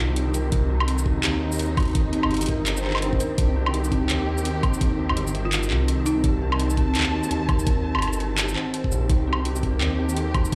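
A half-time drum and bass groove with a swung sixteenth feel sets a tense, dark mood, as an up-front kit of handclaps, metallic hats, shaker and woodblock arrives at 0.2 seconds and an overdriven, knocking electronic kick joins at 0.5 seconds. Beneath them a thick, swirling detuned saw bass churns with phaser and tube saturation, while a bowed chamber string section holds smooth, vibrato-laden chords that pump against the sidechain and an eerie, inharmonic synth bell spins arpeggios through chorus, phaser and dub echo. A faint electronic swell sits in the background from 2.8 seconds, and at 5.5 seconds a woody, rustic marimba plays a brief, boxy phrase with digital delay, all of it heard through a large studio reverb on a big sound system in a bare room.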